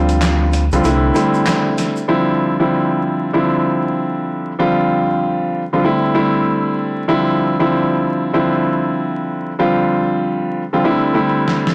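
Up-front grand piano chords in D minor open this moody, reflective boom-bap hip-hop piece at 96 BPM with swung sixteenths, cut from a longer work; a dark, round fingered electric bass sounds alongside them only briefly, stopping at 1.1 seconds, while a gritty, compressed sampler-style kit with a fat snare, hi-hat and handclaps, plus a faint, grainy tube shaker, play until about 2 seconds, leaving the piano alone to cycle through Dm11, G7sus4/D and C69 until a drum fill arrives at 11.5 seconds, the whole recording carrying a blown-out, overdriven sound with vinyl crackle and light reverb.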